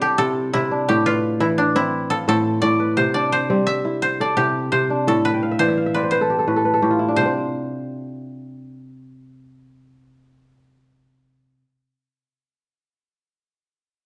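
This West African traditional excerpt moves at a hypnotic 115 BPM in 12/8, with a kora up front spinning ringing, crisp fingerpicked arpeggios over a gentle alternation between C and A minor. A woody, dry koto, played with fingerpicks, carries a warm melody alongside, while the kora takes a mellow fill from 5.3 to 7.2 seconds before the harmony drops away into an open second section. A moderate recital-hall reverb gives the pair a sense of space.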